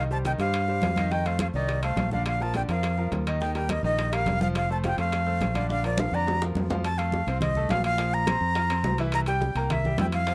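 Salsa at a brisk 210 BPM in Bb major, this short cut from a longer piece feels sunny and joyful from the first beat. A breathy concert flute carries the melody up front, its reedy tone, crisp attack and vibrato captured close, while a brilliant grand piano with short sustain fills out the accompaniment across a broad range. A punchy fingered electric bass sits prominently underneath, warm and direct. The percussion enters just after the start, with thick-skinned congas and tight, high-tuned bongos tucked into the background and ringing metal-shell timbales joining at 0.3 seconds. A drum fill from 6.0 to 6.8 seconds leads into a new section, where the harmony moves from F through Bbsus2 to C7. The sound is dry and detailed, with little reverb and close microphones.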